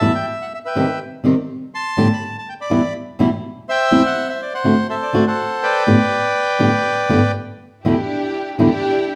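Tango in G major at 123 BPM with a rubato, playful yet passionate feel, where a reedy, dark bandoneon sings the melody up front until 7.3 seconds over a fingerpicked acoustic flamenco guitar moving through chords like Em, Cm, Gadd9 and D7, before a rich, bowed string section with vibrato enters with even stabs on Em7 at 7.8 seconds, all set in a wet, large studio reverb that places the listener further back in the room.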